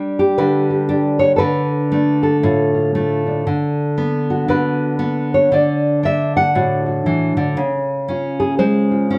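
A thumb-plucked nylon-string guitar with fresh strings and a classical touch plays solo and up front in this gentle, pastoral folk fragment, swinging lightly in 4/4 at 117 BPM and tuned slightly low to A4 = 439 Hz, moving from G through Dm, Bm/D and D to C# across a range from A2 to F#5 inside a moderate, large studio reverb that lasts through the 9.2-second cut from a longer piece.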